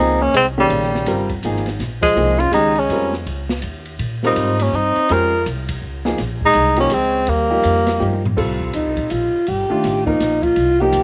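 Intense and searching, this modal jazz passage in a swung three-time feel is cut from a longer piece and opens with a warm tenor saxophone carrying the melody up front, its light vibrato and vintage tone touched by a slapback echo. Beneath it, a breathy alto saxophone plays a second line, dark and distant with subtone, vibrato and scooped notes, while a clear baby grand piano supplies accompaniment with short sustain. A pizzicato upright bass, woody and growly on steel strings, anchors the low end, and an open jazz drum kit with a boomy kick, medium-tuned snare, hi-hat, ride, crash and toms enters at 0.3 seconds. The band hits an accent at 2.0 seconds, and a drum fill starting at 8.0 seconds overlaps the tenor's final phrase, which ends at 8.2 seconds. From 8.4 seconds the alto takes a solo over a shift to a Cm9 chord, closing the passage with the recording's dry, open-air sound.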